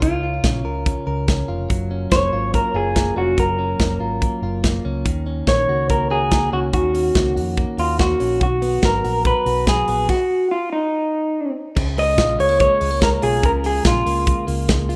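A rough home-demo mix with light reverb and small-room ambience frames this breezy, bright jangly indie pop cut at 143 BPM in Db mixolydian, where a dark, slightly broken-up, lo-fi electric guitar through a small old amp carries the fingered melody up front with spring reverb until 14.4 s, a clean, compressed, direct-recorded electric guitar picks arpeggios through digital delay, a round, amped picked electric bass holds the low end, and a modern studio drum kit with a tight kick, medium-tuned snare, hi-hat and crash keeps time, all pausing for a stop from 10.1 to 11.8 s before the music returns on a Db6 chord.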